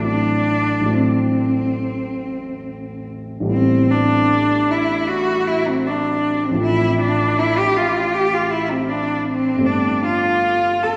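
A single bowed cello carries the melody in this brief, hazy impressionist duo, its clear tone shaded by a smooth, even vibrato. The line moves with a loose rubato feel in four, giving the classical writing a wistful, unhurried quality. Beneath it, a baby grand piano plays the accompaniment in a dark, mellow voice, and its long sustain lets the harmonies blur together. The harmony drifts from Am6 through Asus2 and F/A to G9sus4, and the opening idea returns at 3.5 seconds. A wet church reverb surrounds the pair and places the listener further back in the room, so even the up-front cello takes on a distant glow. Both instruments play across the full 11 seconds of this fragment cut from a longer piece.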